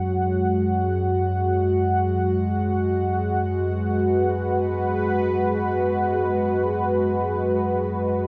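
From the first moment, this ominous dark ambient drone opens with a full-bodied, detuned sawtooth pad, up front with chorus and sustaining evolving chords, over a deep, rumbling drone of triangle and sawtooth tones treated with phaser and its own reverb, all suspended in a vast, echoing space with a huge reverb tail of 7.2 seconds.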